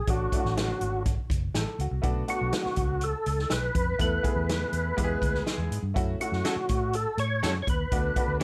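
A lightly reverberant studio sound frames this joyful, uplifting snippet of uptempo 1960s-style soul at 122 BPM in a straight 4/4, with a full, lightly overdriven tonewheel organ carrying the melody up front through chorus vibrato and a slow rotary speaker. Beneath it, a clear, woody, slightly detuned upright piano fills in the accompaniment, a dark, round, foam-muted electric bass anchors the low end, and a distant, roomy big-band drum kit with a boomy kick, medium-tuned snare and hi-hat keeps time over chords moving from Dmaj7 and Bm7 through Esus4 and E to F#m7 and D6. At 6.4 s a compressed, slightly broken-up electric guitar through a small old amp adds lo-fi stabs with a vibrato effect.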